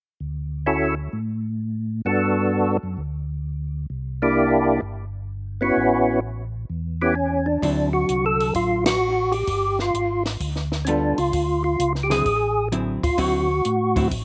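A swinging 4/4 groove drives this soulful soul jazz organ trio, with a mellow, round tonewheel organ holding down the bass through chorus vibrato and a slow rotary speaker while a fat, lightly overdriven percussive organ carries the melody up front, its key click and third-harmonic percussion ringing through slapback echo. At 7.6 seconds the harmony shifts as a clean, compressed hollow-body jazz guitar enters as accompaniment with its own slapback, and a compact cocktail kit joins with dark cymbals, a high-tuned snare and a punchy kick, the band landing an accent at 8.8 seconds. The sound is dry, with little reverb and an open-air absence of room tone.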